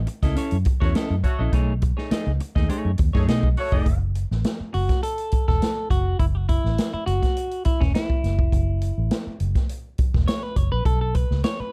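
A straight 4/4 funk groove at 103 BPM drives this sly, short excerpt in F# dorian, with an acoustic drum kit sitting up front: a punchy kick, a medium-tuned snare and hi-hat, recorded naturally in a studio room. Beneath it, a vintage fingered electric bass, foam-muted and amped, gives a round, dark low end that stays forward in the mix. A clean, picked electric guitar supplies accompaniment across the whole piece, while a punchy horn section with vintage vibrato adds a second line from 0.8 to 4.0 seconds. At 3.9 seconds the guitar moves into a solo that carries through to the end, as the harmony settles on F#m7 before shifting to Bsus2 near 10.9 seconds. The production is dry, with little reverb, and has a dark, warm character overall.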